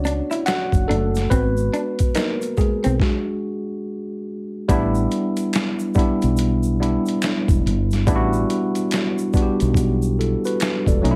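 Soulful and introspective, this 71 BPM neo-soul R&B passage swings gently in 4/4 as a worn, slightly out-of-tune tine electric piano carries a solo through 4.7 seconds over a round, punchy fretless bass, a gritty sampler-style boom bap kit with a thumpy kick, faint compressed shaker and finger snaps, and a slightly broken-up electric guitar with vibrato playing a second line until 3.0 seconds, set in a lightly reverberant room.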